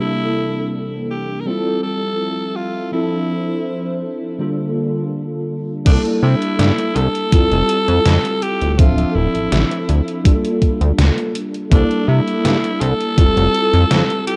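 A raspy, gritty alto saxophone with vibrato carries the melody through tape echo in this nostalgic, woozy vaporwave piece at 82 BPM in F major, over a clean tine electric piano accompaniment with ensemble chorus, a warbling, detuned pad drifting in the background until 5.8 seconds, and then from 5.9 seconds a glossy, chorused synth bass with filter sweeps, an overdriven, thumpy kick and a gated 80s drum machine with crash, hi-hat and gated-reverb snare, all set in a rough cassette home-demo mix.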